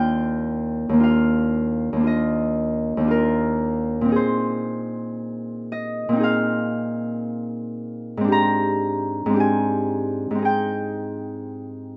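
Peaceful and dreamy, this short classical piece for solo harp drifts in a slow, rubato 4/4, cut from a longer work. A Celtic harp carries everything alone from 0.0 to 12.0 seconds, its thumb-plucked strings ringing out with an acoustic, warm tone that sits up front. The part spans from a deep Eb2 up to a high Bb5, moving through lush harmonies that open on Ebmaj9, pass through Bb11 at 4.2 seconds, and settle from Abmaj7#11 into Abmaj7. Close, detailed microphones capture the instrument intimately, and a light reverb gives the notes a soft halo of space. The result is gentle and unhurried, like a quiet reverie suspended in time.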